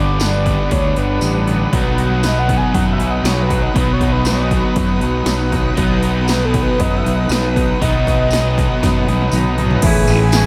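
A growly, overdriven fuzz bass sits up front in this blissful, hazy shoegaze and dream pop excerpt, joined by punchy 80s electronic drums with a gated snare, metallic hats and a jingly vintage tambourine. A round, warbling horn-like synth lead carries the melody with vibrato over a pure, organ-like pad, while three background guitars fill the haze: a bright double-tracked distorted part, a dark thick fuzz riff, and a clean twangy line with reverse reverb. The kick and snare drop out briefly at 1.2 seconds, a drum fill arrives at 8.8 seconds, and the distorted guitar stops at 9.8 seconds, all inside a dreamy mix soaked in huge ambient reverb.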